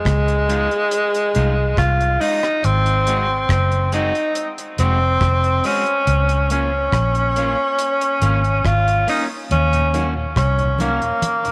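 A straight, unhurried four-beat pulse anchors this short, serious and laid-back roots reggae excerpt. The drum kit sits dry and dark with a tight kick, rim clicks and hi-hat softened by a rolled-off top, while the foam-muted fingered electric bass comes up front with a round, amped tone. Over them, the tenor saxophone carries the melody as a pop-style solo, sounding distant and roomy with light vibrato and a trail of tape echo. Behind it, a twangy, fingered electric guitar at the edge of break-up adds accompaniment, also touched with tape echo. Near the close, high-tuned, damped congas enter at 9.5 seconds, and at 9.7 seconds a mellow, flute-like tonewheel organ joins in the background with chorus vibrato, slow rotary speaker, tube saturation and echo. A moderate plate reverb gives the mix a gentle sense of space as the chords move from Fm7 through Ab7 and Db6 to Ebm7.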